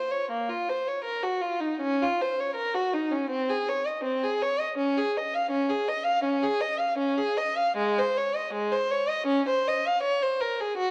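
A single bowed violin opens the recording, playing up front and alone from 0.0 to 10.9 seconds in a baroque-style suite movement for unaccompanied violin. The mood is flowing and introspective, set at 80 BPM in 4/4 but shaped with a free, rubato feel. The player's tone is warm and expressive, colored by vibrato and portamento, and the line spans a range from Ab3 to F5. A moderate recital hall reverb gives the sound a sense of space around the instrument. Over it all lies the character of worn cassette tape, with a warbling pitch drift that lends the recording an aged, wavering quality. This short excerpt is cut from a longer piece.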